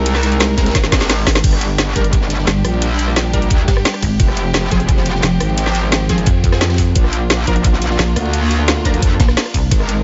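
A metallic, aggressive wobble bass with chorus, tube saturation and sidechain pumping drives this dark, mechanical drum and bass excerpt from the start, joined at 2.5 seconds by a heavy, pulsing pluck wobble bass, both sitting up front. An overdriven drum and bass kit with a woody snare and bright hats leads the percussion alongside a knocking electronic kick, while a very quiet, gritty breakbeat kit sits beneath, and a drum fill carries into the drop's second pass at 1.4 seconds. Lush bowed strings hold chords in the background over Abadd9, Gm, Fm and Bb, punctuated by bold, detuned orchestra-hit-like synth stabs with phaser and tape echo, in a dry mix.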